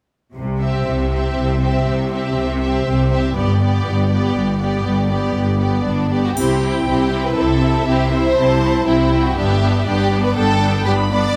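Cinematic heroic adventure film score in C major, this triumphant, soaring string passage moves at 120 BPM in a straight 3/4, cut from a longer piece and alternating between C and G chords. Bright double basses and rich, smooth, even cellos carry the bass line from 0.4 seconds, their bowed tone full of vibrato. A clear, intense violin section sings the high melody from a distant symphonic placement, while a second violin section adds a focused line with a smooth top beneath it. Close studio violas fill the middle with lush, steady accompaniment. At 6.4 seconds, as the music moves into its second section, a dry triangle with a dark cymbal colour briefly joins until 7.3 seconds. A moderate recital hall reverb surrounds the ensemble.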